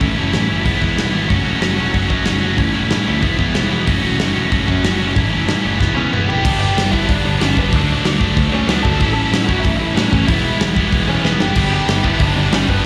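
A rowdy, rebellious punk rock passage, cut from a longer piece, opens on a big acoustic drum kit up front, with a punchy kick and medium-tuned snare in a roomy, rolled-off sound, alongside a bright picked guitar riff and a sludgy, overdriven second guitar tucked behind it with slapback echo. A growly, direct electric bass with a modern edge drives underneath, and the chords cycle through A, E and F sharp minor in a straight, charging four-beat feel. During a drum fill, a dark lead guitar through a small cranked amp enters at 6.0 seconds with an overdriven, echoed melody as the harmony shifts to G, D, A and E. A further double-tracked guitar riff joins in the background at 11.6 seconds, landing on G just before the cut. The whole thing sounds like a live gig heard through a club PA, soaked in small-room reverb.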